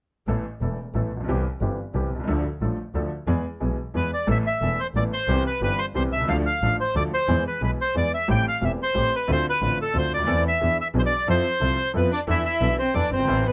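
Closely miked and dry, this sultry, dramatic tango excerpt in a rubato three-beat feel opens with a brilliant, worn grand piano sitting up front and a smooth bowed double bass with vibrato, before a reedy, mid-forward bandoneon takes the melody at 4.0 seconds and a distant, rich violin adds a bowed second line with portamento from 12.0 seconds.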